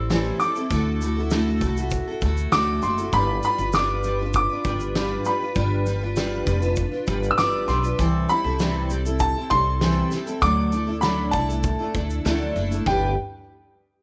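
Acoustic pop in G major at 99 BPM, heartfelt and carefree, where a boxy upright piano carries the melody high over a full-bodied, up-front, double-tracked picked steel-string guitar, a woody pizzicato upright bass and a distant, roomy indie drum kit with a fat snare and punchy kick, moving through Am7, Dadd9, G7 and C6 before landing on G at 12.9 seconds in this short, lightly reverberant cut from a longer piece with a rolled-off top.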